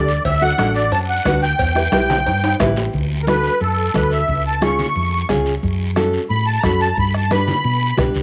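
Joyful, festive cumbia at 178 BPM in D major, where a reedy, shimmering musette accordion with slapback echo leads up front over a round, dark hollow-body electric bass and a bright fingerpicked nylon-string guitar. A close, raspy guiro joins damped hard-hand congas and a soft-beater bombo sitting in the background. Ringing vintage cowbell and timbales play from 0.3 s and drop out at 2.9 s, after a drum fill from 2.1 s, as the accordion begins a solo in this short excerpt from a longer piece, all set in light small-room reverb.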